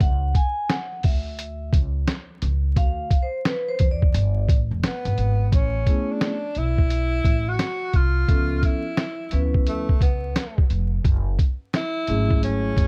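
A smooth, cool jazz-hop excerpt at 87 BPM in A major opens with a ringing, metallic vibraphone solo in a boxy small room over a woody pizzicato upright bass and a muffled, compressed, pitched-down sampler-style drum kit with a thumpy kick and 12-bit grit, before a breathy, whispered tenor saxophone with subtone and scooped notes enters distant and intimate at 4.9 seconds, all under dark production with vinyl crackle as the chords drift from C#m to Amaj9 and F#m7.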